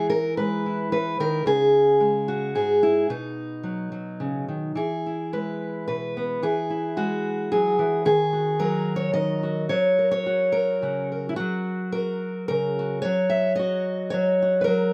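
A dark, intimate production with moderate studio reverb frames this short folk excerpt for solo fingerpicked steel-string acoustic guitar, which sits up front with a concert presence and is tuned to A4 = 439 Hz. In a free, rubato 3/4, the guitar moves through E, C#5 and B, opens a second passage at 4.8 seconds with E, Eadd9, D#m and F#, and lets the harmony fall away at 13.0 seconds. The haunting mood stays close and personal across a range from G#2 to E5.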